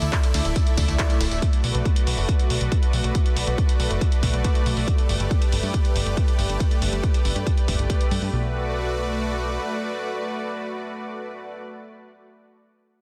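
A straight 4/4 pulse at 139 BPM drives this euphoric yet bittersweet uplifting trance fragment in B minor, opening on a drop where a heavy, layered electronic kick sits up front beside a punchy analog drum machine of handclaps, hi-hat, ride cymbal and tambourine with a small-room character, while a funky, filter-plucked sawtooth-and-square bass and a lush, detuned supersaw pad both pump with the sidechain through Dsus2, Bm7 and Gadd9 chords, until the drum machine stops at 8.3 s, the bass follows at 9.6 s, and the bright, slow-attack pad sustains to 11.6 s in light reverb within a dense, heavily limited master.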